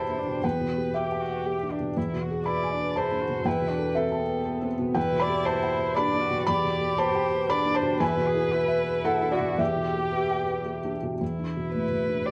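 A rubato lilt in 3/4 carries this longing, reflective neoclassical fragment, where a veiled, smooth-topped violin sings the melody with vibrato and portamento over a dark cello second line, both bowed con sordino by single players with soft attacks, while a felt-muted upright piano, mellow and intimate with audible action noise, sits up front beside the violin, the trio playing live together in a stone room whose wet reverb surrounds the harmony as it moves between Em7 and E7.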